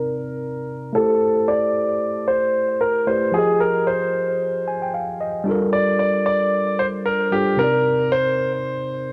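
A bright concert grand piano with brilliant tone and long sustain leads this soulful, hypnotic amapiano excerpt at 113 BPM, carrying the melody between G4 and D5 through a low-pass filter, cassette tape and analog delay, while a worn, slightly out-of-tune tine electric piano accompanies from the same moment over Cm9, Am7, Fm9 and Gm9 with a fill from 4.4 to 5.5 seconds, all set in light reverb and small-room ambience on a home cassette recording with a filter sweep running throughout.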